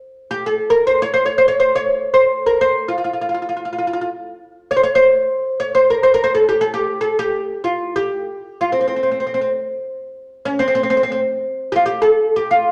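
This festive, passionate Turkish makam piece is cut from a longer performance and unfolds in free time in C makam hicaz, tuned to A4 = 441 Hz. A lone acoustic oud carries it from 0.3 to 12.7 seconds, its plectrum-plucked, fretless double strings sounding woody and up front as it ranges from C4 to Db5. A wet, large-studio reverb with a 1.4-second decay surrounds the playing.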